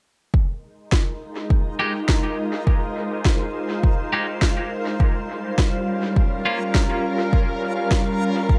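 Deep and hazy, this ambient dub excerpt moves at 103 BPM in F minor with a gently swung 16th-note feel, shifting from Fm7 to Gm7b5 at 5.0 seconds. An overdriven, layered electronic kick sits up front from the opening beat, joined at 0.9 seconds by a woody, tape-warmed electronic snare soaked in dub echo, while a pure, calm organ-like pad with ensemble chorus and reverb holds sustained chords from 1.2 seconds. A bright, twangy clean electric guitar adds compressed, picked stabs through spring reverb and dub echo, and a reversed, detuned granular texture swells dreamily in the background of an echo-heavy digital space.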